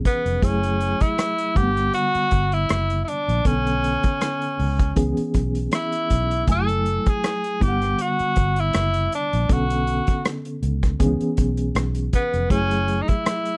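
A dry, close 1970s-style studio sound frames this lush, cinematic soul excerpt, taken from a longer piece, with a smooth, lightly swung groove. A clear tenor saxophone carries the melody up front with light vibrato and scooped notes, over a reedy, worn, slightly out-of-tune electric piano with fast tremolo that enters alone at 0.0 seconds. A vintage drum kit with a punchy kick, rolled-off top, hi-hat and rim click is soon joined by a round, foam-muted fingered electric bass as minor ninth and major seventh chords cycle beneath.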